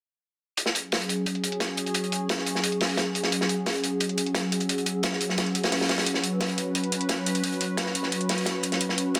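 A straight 4/4 groove at 175 BPM drives this tense, dark stretch of technical drum and bass, cut from a longer piece and running from 0.6 to 9.2 s. Up front, a crunchy breakbeat kit plays hi-hat and a medium-tuned snare that sound saturated and gritty with a rolled-off top, high-pass filtered along with their small-room ambience. A quieter electronic hi-hat is layered with the kit, adding metallic hats that were re-recorded in a small room and low-pass filtered. A sweeping resonant pad holds sustained chords on F#5, between F#3 and B4. Its detuned sawtooth and triangle tones are shaped by ring modulation, chorus, a filter swell and vintage 12-bit sampler grit. Deep in the background, a warbly, nostalgic tape-like pad drifts between C#4 and E6 with chorus and built-in reverb, while a moderate lush hall reverb and a dense, heavily limited master complete the sound.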